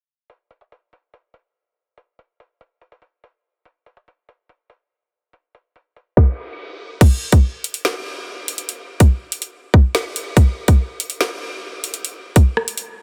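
Dark and menacing, this hip hop excerpt at 143 BPM in a half-time feel is built on an electronic drill drum kit that enters at 0.3 s, sitting up front with a hard-clipped kick, woody snare, metallic hats, rim clicks and crash cymbal, while a filter sweep runs until 7.0 s before the second section begins, all within light reverb and a dense, heavily limited modern master with a low-pass filter.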